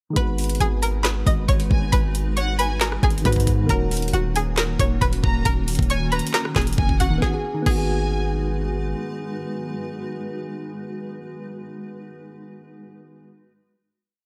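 Brooding, dark half-time trap at 136 BPM in G# minor, where a twangy string-like resonator pluck loops an octave-doubled melody over soft, round electric-piano-like keys and a cloudy, evolving granular pad, while a distant, lush violin section adds a sparse counter-melody with digital delay, and a knocking trap kit with fast hi-hat rolls and clap-layered snare pairs with a punchy 808 bass whose pitch-sliding notes follow the kick, until the drums drop at 7.8 seconds and the keys and pad hold a final G#m7 chord, the keys ringing out to 13.3 seconds.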